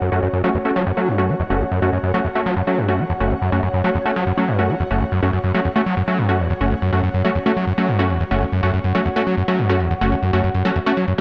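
Driving peak-time techno at 141 BPM in F# minor, this hypnotic fragment cut from a longer piece sits on a single F#m chord, led by a screaming, squelchy acid line, resonant and distorted with chorus and tape echo, pushed up front across a low-to-mid range. Punchy supersaw stabs, bright and detuned with a filter pluck and tape echo, enter at 0.1 s alongside it, while an ethereal, mellow pad with ensemble chorus and built-in reverb hangs in the background. A barely audible electronic hi-hat ticks beneath, all set in a moderate digital room reverb.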